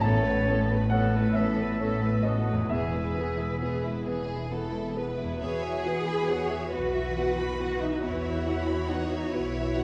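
Set in a slow, rubato 6/8, this short cinematic passage, cut from a longer piece, feels hopeful and tender, its chords moving from Aadd9 to E and settling on Esus2 at 5.4 seconds. Violins carry the melody with vibrato and portamento, close and expressive, while a second violin line sits smooth and even in the background. Flute and oboe add second lines only through the first four seconds or so: the airy, distant flute with a crisp attack and straight tone, and the oboe singing in a classical solo style with vibrato. Underneath, a polished, present grand piano and background violas accompany, a very quiet fingerpicked harp rings out arpeggios until 9.3 seconds, and lush cellos join a rich double bass section to ground the bass. The dark, warm production is framed by a moderate recital hall reverb.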